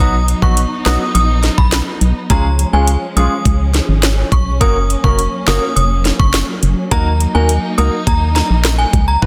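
A straight 4/4 dancehall groove at 104 BPM drives this bouncy, hypnotic piece in Eb minor. An electronic island pop drum kit arrives at 0.3 s, with a knocking kick, sharp snare, rim click and metallic hi-hats placed up front with the air of a large room. Beneath it, a hollow, dark, organ-like FM bass sits loudest in the mix, its fast attack decaying after each note. High above, a synth chime carries the melody in an inharmonic, ringing FM tone, thickened by ensemble chorus and digital delay. A clear grand piano supplies intimate accompaniment with audible action noise and long sustain, while a lush bowed string section holds smooth, vibrato-rich chords that pump from sidechain. The harmony cycles through B, Db, Gb and Ebm, framed by light reverb, digital ambience and a dense, heavily limited modern master.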